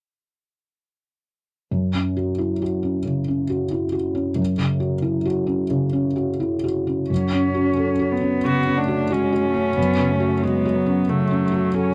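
A felt-muted upright piano, soft and intimate with its action noise audible up front, opens this longing, melancholic neoclassical piece alone at 1.7 seconds, playing a rubato accompaniment in F# minor around 90 BPM. At 7.1 seconds a single con sordino cello enters with a veiled, smooth-topped second line, while a reedy, breathing pedal harmonium holds sustained chords in the background, and a lone bowed viola, dark with vibrato, joins the accompaniment at 8.5 seconds. The sound is dry and close, a 1970s-style studio recording with a modest booth ambience.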